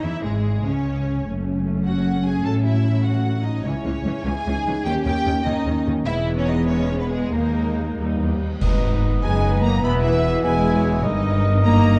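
Classical orchestral music, dramatic and restless, in a rubato 6/8 at 99 BPM settling into G# minor: lush vibrato violins carry the melody over a second violin line, distant violas, mellow close French horns and a rich double bass and cello foundation. Bright cymbals and bass drum swell in from 6.1 s, and at 8.6 s an accent brings in a distant, roomy cor anglais, a close-miked clarinet and trombones, joined at 9.2 s by a hollow flute, all in a dark concert-hall reverb.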